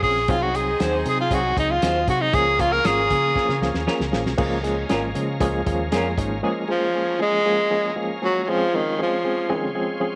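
Uptempo 1960s-style soul, danceable and uplifting, in which a breathy, intimate tenor saxophone solo sits up front over a barky electric piano with fast tremolo, a gritty tonewheel organ holding chords in the background, a round muted electric bass, a muffled soul drum kit with a fill from 3.4 seconds, an edgy saxophone section playing a second line, and twangy guitar stabs, all in a small room, with the bass and drums stopping near 6.4 seconds as the piano and organ carry on.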